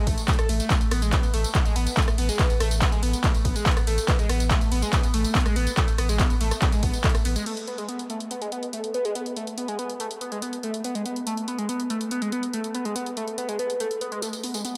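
Dark and driving, this peak-time techno fragment at 142 BPM opens on a drop, where a punchy, tape-warm electronic kick and a deep, round sine sub bass with tube saturation and sidechain pumping sit beneath a screaming, guitar-like overdriven synth riff carrying phaser, 12-bit sampler grit and tape echo, while an up-front analog drum machine adds hi-hat, ride, crash, handclaps, rim click and tambourine in light reverb, until the kick stops at 7.1 s and the bass at 7.4 s, and the harmony shifts from Asus2 to G#m at 7.5 s as the lead and drum machine carry on together.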